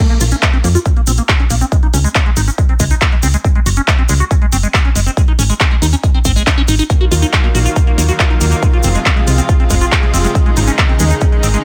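A punchy, up-front electronic kick drives this emotional, bittersweet uplifting trance passage at 139 BPM in Bb minor. It sits with layered big-room handclaps and hi-hats, the hats pumping against the sidechain, a grainy tube shaker, and a round, dark FM bass that pumps as well. Above them a squelchy, resonant acid bass spins arpeggios through phaser, subtle chorus and dub echo, and a lush, detuned unison pad joins at 6.9 s with bright, chorused sustained chords, all in a dry, close sound.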